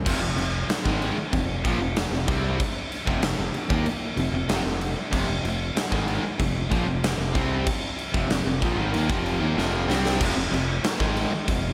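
A big arena sound with a lush hall reverb frames this menacing, driving hard rock excerpt in F minor at 95 BPM. Up front, a big acoustic rock kit with a tight kick, medium-tuned snare and crash cymbal rings in a stone room. Beneath it a modern fingered electric bass plays direct, and three picked guitars stack the riff in the background: a bright overdriven guitar with slapback echo, a sludgy, warm distorted one also carrying slapback echo, and a very quiet double-tracked sludgy layer. A drum fill from 9.6 to 10.2 seconds launches a return of the riff before the cut at 11.7 seconds.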